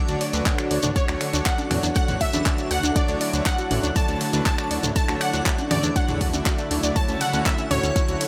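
Progressive house in a straight four-four, expansive and hopeful, this short passage drifts from a Dmaj7 to an A6/D at 7.0 seconds. A bright, punchy unison pluck carries the melody with delay, shadowed in the background by an airy, dreamy lead whose soft attack, chorus, phaser and vibrato give it a floating quality. Beneath them, a thick, warbling vintage pad holds sustained chords, a smooth supersaw adds delayed stabs, and a second detuned pluck runs arpeggios, each of these three breathing with sidechain pumping. A fat sawtooth analog bass anchors the low end, while a deep, up-front electronic kick drum lands at 0.5 seconds. Around it sit a layered pop kit of finger snaps, handclaps, hi-hat and ride cymbal, a grainy, close and dry shekere, tape-warm electronic toms and congas arriving at 0.8 seconds, and a gritty, pitched-up sampler-style breakbeat kit that is barely audible, all under light reverb.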